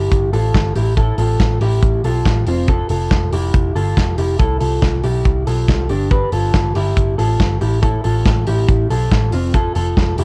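An electric guitar through a small old amp sits up front, its dark, slightly broken-up and compressed tone spun into arpeggios through a lush chorus and digital delay, in this nostalgic, youthful slice of jangly indie pop cut from a longer piece. A vintage muted picked bass, round and foam-muted, holds the low end while a punchy, mid-forward studio drum kit with a medium-tuned snare and rolled-off top drives the straight 4/4 pulse from 0.1 seconds, moving through chords such as Fmaj7, C6 and G7. The whole mix is dry yet steeped in worn cassette tape, its warbly pitch drift giving the sound a faded, homemade charm.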